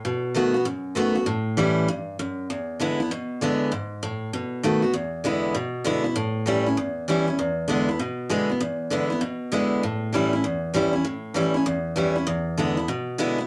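A bright, full-bodied picked steel-string dreadnought, up front in a small room with finger squeak audible, plays alone through this rollicking, retro rock excerpt at 196 BPM with a swung eighth-note feel in E mixolydian, moving through dominant seventh chords from B7 to A7 and E7 before a new section begins at 4.9 seconds and runs to 13.5 seconds.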